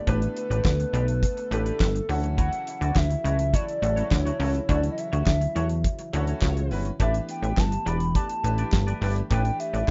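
A hollow, woody synth lead with chorus carries the melody over a brassy, detuned analog pad from the start of this late-night early-eighties boogie funk cut at 104 BPM, with a plucky sawtooth bass and a damped 70s kit (fat snare, tight kick, hi-hat and handclaps) sitting up front. A bright concert grand piano comps in the background while a twangy, clean electric guitar with analog chorus plays a riff, and the chords move from A9sus4 to Dmaj9 and back. A band accent lands at 4.7 seconds, and a mellow, round synth brass second line slips in briefly between 5.1 and 6.8 seconds, all in a rough home-demo mix with light reverb and a rolled-off top.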